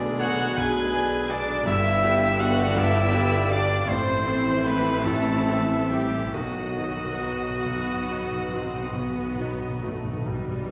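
A clear, up-front concert grand piano carries a tragic, brooding melody with deep bass from the start of this romantic classical excerpt, set against a bright solo oboe, a dark, woody violin section, a distant viola section, a mellow French horn section holding sustained chords, and a soft tuba with double basses anchoring the low end. A moment later, a rich second violin section sings high above with smooth vibrato, joined by an airy flute ensemble, stabs from a distant, roomy trumpet, and an intense cello section in the background. From 6.3 seconds, calf-headed timpani played with medium mallets add a fill, all flowing in a rubato 12/8 within a reverberant recital hall.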